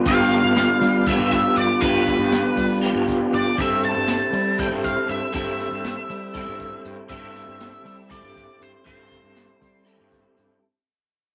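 Psychedelic rock in an odd 7/8 metre with a straight feel, hazy and hypnotic, cut from a longer piece and fading out across its full 10.6 seconds. A twangy, lo-fi electric guitar through a small old amp sits up front with a bright, slightly broken-up riff colored by a rotary speaker, while an octave-fuzz lead guitar, dark and distorted with wah, carries the melody from 0.1 seconds. Beneath them a fuzz fingered electric bass, round and punchy, holds the low end, and a crunchy breakbeat drum kit of hi-hat, kick and snare brings a gritty, saturated sound with a rolled-off top. In the background a fat, percussive tonewheel organ holds sustained chords with key click and a slow rotary speaker, and a grainy tube shaker adds mellow texture until 9.6 seconds. The harmony moves from G7 to Am/G, and a moderate club reverb ties the parts together.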